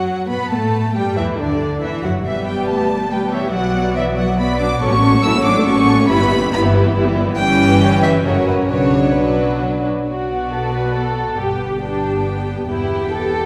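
In a rubato triple metre, this quick, stormy and dramatic classical-period orchestral movement, cut from a longer piece, sets an intimate violin section melody, played sul tasto with vibrato, over a second violin line with a smooth top, an up-front viola accompaniment, a pure, floating cello section in the background and a dark double bass section, all bowed with soft attacks and heard from further back in a wet concert hall.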